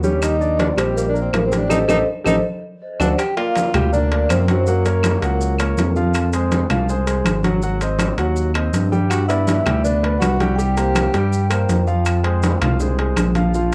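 Danceable and sophisticated, this Afro-Cuban jazz passage moves at 162 BPM in a straight 4/4, cut from a longer piece. A vibraphone played with soft mallets carries the melody, its metallic, airy ring shimmering with fast motor vibrato and a touch of tape echo. A mellow tenor saxophone plays the second line in a subtone with a smooth top. The vibraphone and saxophone both drop out at 5.9 seconds and return at 9.1 seconds. Underneath, an intimate concert grand piano with long sustain and audible action noise holds the accompaniment, while an up-front, gliding synth bass blends sawtooth and triangle tones with wave-folding, portamento and vibrato. Distant congas, ringing metal-shell timbales, woody claves in the background and grainy maracas drive the percussion, with a band accent and drum fill leading into a harmonic path through chords such as Gm7, Ab7 and Gmaj7, all set in a dry, close 1970s-style studio sound with light reverb.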